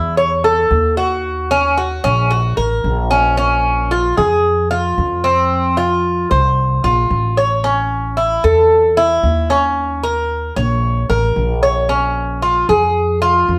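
A picked acoustic Cuban tres carries this warm, danceable slice of Cuban son and guajira, spinning arpeggios across its double strings with a metallic ring and some octave-doubled courses adding shimmer. Beneath it, a pizzicato upright bass on steel strings supplies a dark, woody, growly line with a thumpy attack, and both instruments sit up front, playing together from 0.0 s to the cut at 13.6 s. The straight feel suits dancing, and the harmony moves from A and Ebm7 into a new section at 3.4 s that passes through Bbm7, F, A and Eb5 before landing back on Bbm7. A studio reverb lends the pair a roomy bloom, placing the listener a little further back in the space.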